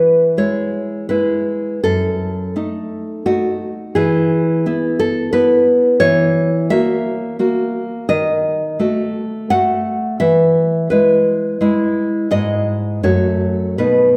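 Nostalgic and sunny, this romantic piece for solo classical guitar unfolds in E major at 85 BPM in 3/4, with a rubato feel that lets the phrasing breathe. A single nylon-string guitar carries everything, fingerpicked in a classical manner and sounding full-bodied and up front, spanning from F#2 up to F#5. The harmony moves from E through a diminished chord over F#, back to E, then to F#7 over E and D#dim before settling again on E around 10.2 seconds. Near the close it touches E over G# and arrives on F#m at 13.0 seconds, leaving the phrase open as this passage, cut from a longer piece, ends at 14.2 seconds. A wet recital hall reverb with a 1.9-second decay surrounds the guitar, giving it a spacious, resonant glow.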